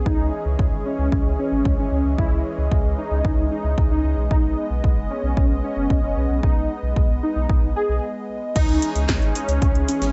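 A dark, softly reverberant production frames this nostalgic, melodramatic italo disco excerpt, where a lush, detuned sawtooth pad with chorus holds sustained chords over a round, deep analog bass. A thick, bold unison lead with vibrato, ensemble chorus and digital delay carries the melody, and a punchy, tape-warm electronic kick sits up front as the harmony moves from C#madd9 to G#m. After a brief break at 8.0 seconds, a house drum kit with a cracking snare, metallic hats, cabasa, handclaps and crash cymbal enters at 8.6 seconds as the chords return to C#madd9.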